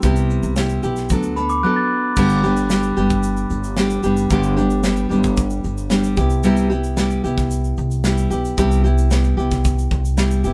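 A straight 4/4 pulse at 112 BPM carries this sunny, easy-going acoustic pop clip in G major, cut from a longer piece. The modern studio drum kit sets the groove with a punchy kick, a medium-tuned snare, shaker and crash cymbal, its sound airy and polished in a small room, while a tube shaker adds a grainy, close texture in the background. Up front, the pizzicato upright bass sounds woody, dark and thumpy on steel strings, and the fingerpicked nylon-string guitar is bright with a deep classical tone and an audible finger squeak. Between 1.4 and 2.1 seconds a glockenspiel played with rubber mallets adds a soft, bell-like, ringing line high above the band. The harmony moves from Cmaj7 to D6 before settling on G at 2.2 seconds and later returning to Cmaj7. The whole band plays live together in one room, framed by moderate studio reverb.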